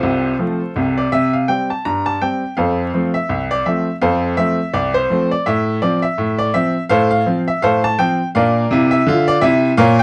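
A bright, brilliant baby grand piano plays solo and up front in this jaunty, playful ragtime excerpt at 83 BPM in 2/4 and F major, its intimate tone carrying audible action noise and long sustain as it swings through F/C, C5, F, F/A and Bb across its ten seconds, set in light reverb within a dark production dusted with vinyl crackle.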